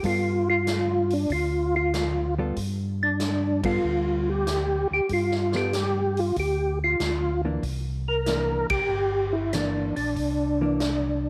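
Soul jazz organ trio playing a bluesy, soulful groove at 95 BPM in 4/4, with a strong swing on the eighth notes, cut from a longer piece. A percussive tonewheel organ carries the melody through the midrange, its round, clean tone shaped by third-harmonic percussion, chorus vibrato and a slow rotary speaker, sitting up front. Beneath it, a second, mellow tonewheel organ supplies the bass line with a dark, lightly overdriven edge, also treated with chorus vibrato and slow rotary. A hollow-body jazz guitar adds fingered, compressed accompaniment in a dusky, clean voice, while an acoustic big-band drum kit swings on ride cymbal, hi-hat, a medium-tuned snare and a punchy kick with a natural, big-room sound. The harmony rests on G9 before moving to C9 at 7.6 seconds, and the band hits accents together at 3.5 and 8.6 seconds, all within light reverb and small-room ambience.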